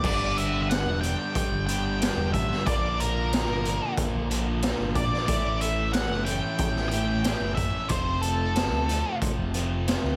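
Quiet-loud alternative rock at 92 BPM in 4/4, cut from a longer piece, with a cathartic, anthemic mood as the progression moves through G, Bb, A and F. An up-front, dark octave-fuzz lead guitar with digital delay carries the melody until 9.2 s, over two bright picked riff guitars: a cranked stack guitar sitting in the background and a distorted electric guitar. Alongside them, a round, punchy overdriven fingered bass and an up-front, gritty, saturated garage drum kit with a boomy kick and rolled-off top drive the track in a small room with light reverb.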